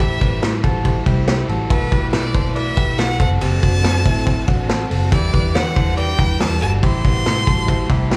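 This sounds like a live club show heard through the venue's PA, with a roomy reverb around the band, and it is cut from a longer piece. It is restless, wistful jangly indie pop in a straight four, and every part plays throughout. A close, intense violin carries the melody with vibrato and an airy bow, and a slapback echo trails behind it. A twangy, compressed clean guitar picks arpeggios with the same echo. A foam-muted, round bass and a saturated, gritty drum kit with dark cymbals and a punchy kick sit up front. Further back, a worn, reedy electric piano heard through its built-in speakers adds spring reverb and echo and plays a short fill at 7.7 seconds, while a very quiet overdriven guitar and a shimmering sawtooth string machine fill out the harmony over chords moving from Am7 through B7sus4, F#dim and Em7.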